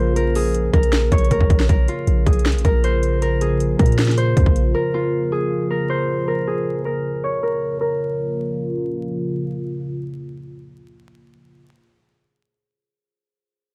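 Vinyl crackle and a dark, warm production wrap this brooding, melancholic trap excerpt in a half-time feel. A ringing, fingerpicked Celtic harp carries the melody up front through a low-pass filter, over a moody analog pad of detuned sawtooth tones with a sub octave, chorus and phaser, while a soft, boxy felt-muted upright piano is barely audible for the opening 1.7 seconds. A boomy, warm 808-style bass and an up-front trap kit with a hard-clipped kick, sharp snare and metallic hats play through roughly the first half, with a drum fill leading into a filter sweep that runs to 7.8 seconds.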